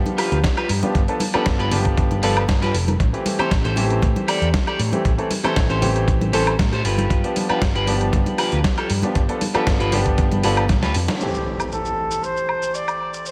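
Sleek and cosmic, this nu-disco excerpt moves at 117 BPM in A minor, with a clear, up-front concert grand piano comping through sidechain pumping and dub echo over a round, punchy hollow-body bass with tube saturation, a thumpy electronic kick, a gritty sampler-style kit with fat snare, hi-hat, shaker and woodblock, and congas in the background. A bright, twangy electric guitar at the edge of break-up plays a riff through lush chorus, low-pass filter and dub echo, all set in an echo-heavy mix with a moderate echo chamber reverb. After a drum fill and band accent near 11.1 seconds, a mellow trumpet section with light vibrato takes the melody through analog delay at 11.2 seconds as an electronic impact sounds and the harmony settles on Am7.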